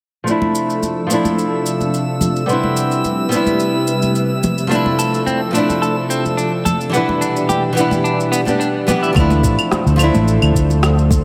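Relaxed and warm, this sunset chillout excerpt moves at 108 BPM in D dorian with a light sixteenth-note swing, as an up-front fingerpicked nylon-string guitar with low-pass filtering and tape echo rests on silky, warbling string-machine chords, electronic shaker, claves and rim click, and bright hard-hand congas set in the background. A glassy, drifting harmonics texture hovers high from 1.0 s, and a clean, picked electric guitar adds tape-echoed arpeggios from 4.7 s over Dm7, Cmaj7 and Em7 changes. At 9.2 s the music shifts to a new section as a punchy, tube-saturated fingered bass and a soft electronic kick arrive, all set in a lush hall reverb.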